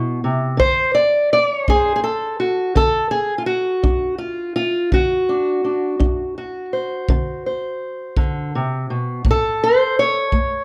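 A fingerpicked steel-string parlour guitar sits up front, its dark, boxy tone carrying the melody from the first moment to the last in this rollicking, gritty slice of acoustic country blues. The piece moves in an unhurried 12/8 with a straight feel, and the guitar ranges from its low strings up into a higher register across the passage. An acoustic kick drum with a natural, punchy studio-room sound, accompanied by brushes, joins at 0.6 seconds and continues to the close. The harmony settles on a D7 for most of the passage before moving to an A at 9.2 seconds. A moderate small-room reverb gives the pair an intimate, close-quartered feel, and the passage is clearly cut from a longer performance.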